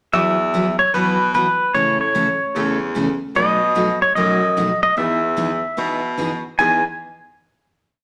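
A wet studio reverb gives this short, complete western swing piece a roomy glow, and the whole thing is cheerful and playful from the first bar. An electric pedal steel guitar carries the melody up front, twangy and clean, played with fingerpicks and slide, tossing out short call phrases built on a motif and shaped by volume swells. Beneath it, a bright, full-bodied dreadnought acoustic guitar picks a steady four-to-the-bar rhythm, also close and present. A clear baritone saxophone takes the bass role from further back, punchy and forceful with vibrato and scooped notes, laying down a jazz-style two-beat root-and-fifth line. The harmony moves from Esus2 through A and B7 to a closing Emaj7, and all three parts stop at 6.8 seconds, letting that final chord ring out in the reverb until the end at 8.0 seconds.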